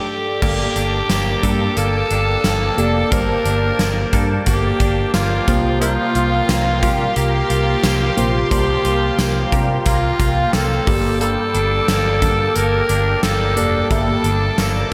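Glossy and uplifting, this excerpt of 1980s-style pop moves at 89 BPM in a straight 4/4, opening with a brief band accent as a raspy, gritty alto saxophone carries the melody up front with light vibrato over chords shifting from Gmadd9 to C7sus4 at 5.5 seconds and back at 10.9. Beneath it, a punchy gated drum kit with bright cymbals and tambourine joins a round, foam-muted fingered bass at 0.4 seconds, while a mellow FM electric piano with chorus and phaser, a swirling phased analog pad, a twangy clean electric guitar riff with delay, and very quiet funky polysynth stabs fill out the arrangement. The whole mix is soaked in a lush hall reverb, giving it a dreamy sheen.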